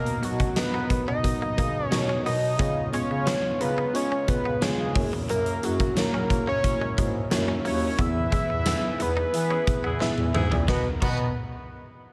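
A fat, up-front analog lead carries the melody through this uplifting, glossy 1980s-style pop passage cut from a longer piece, over a huge arena drum kit with gated reverb and a punchy kick, a dark tremolo FM electric piano, a mellow bass clarinet on the bass line, a very quiet warbling analog pad, a faint twangy direct-recorded guitar riff and a tight vintage horn section whose stabs arrive at 9.5 seconds, all in a small room with light reverb, as the band accents the final E chord and a drum fill leads back to Bmaj7 at 10.7 seconds.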